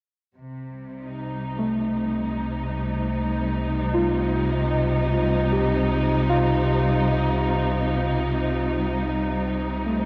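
Ambient music at 76 BPM in C dorian, spacious and serene, this brief cut from a longer piece opens at 0.4 seconds with a lush, bowed string section holding sustained chords over a deep, round sub bass resting on C2. At 1.6 seconds, muted, felt-like synth keys enter with soft, intimate arpeggios, their dark tone coloured by chorus and delay. A huge, wet reverb with a 7.6-second decay surrounds the sound, and worn cassette tape lends a warbling pitch drift.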